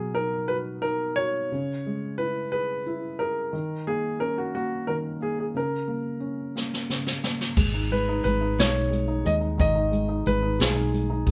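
A grand piano carries the melody from the opening second, its tone warm, polished and present with a short sustain. Beneath it, a felt-muted upright piano plays the accompaniment, soft and mellow with a thick, intimate felt sound. This is a tender, heartfelt pop ballad in 6/8 at 59 BPM counted in dotted quarters, with a straight feel, moving through B, C#m7, D#5 and A#m/C# before settling on G#m. At 6.6 seconds a jazz drum kit played with brushes enters with a fill, bringing dark cymbals, a high-tuned snare and a boomy kick in a distant, roomy sound with a rolled-off top. At 7.6 seconds a woody fretless electric bass joins as a new section begins, round, punchy and amped with a hollow-body character. The band plays together in one large studio room with moderate reverb, every part sitting up front, and the passage is cut from a longer piece.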